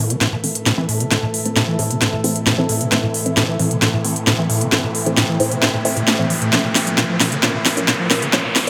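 Driving peak-time techno, intense and relentless, builds throughout this short cut-out with a drum fill and filter sweeps on the squelchy, gritty acid bass riff and the muted, nasal dub chord stabs, while a riser enters at 1.4 seconds and the harmony moves from Am to Bbm at 6.5 seconds. Up front, the layered electronic drum kit pairs a cracking snare with smooth hats and shaker, while an eerie metallic FM drone and a cloudy, evolving granular pad sit in the background beneath the phased, delayed stabs. A lush hall reverb and bright 1980s-style digital sheen give the build a glossy, spacious finish.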